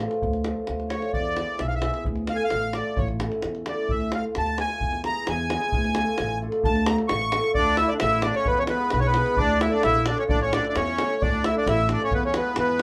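This Balkan folk excerpt captures a wedding band in a virtuosic, restless mood, moving at 131 BPM in a straight 2/4 in D Hungarian minor. A reedy, sweet and airy accordion carries the melody up front from 0.9 seconds, and its light tremolo tuning gives it a gentle flutter as it takes a solo through the opening section. Beneath it, a mellow cimbalom provides hammered, shimmering, ringing accompaniment. A woody, growly pizzicato upright bass with steel strings and a deep davul hold down the low end. At 7.6 seconds a second accordion joins with a lower line, its slow beating lending a warm shade. The harmony circles between D minor, E and A, and a moderate small-room reverb keeps the band sounding close and intimate.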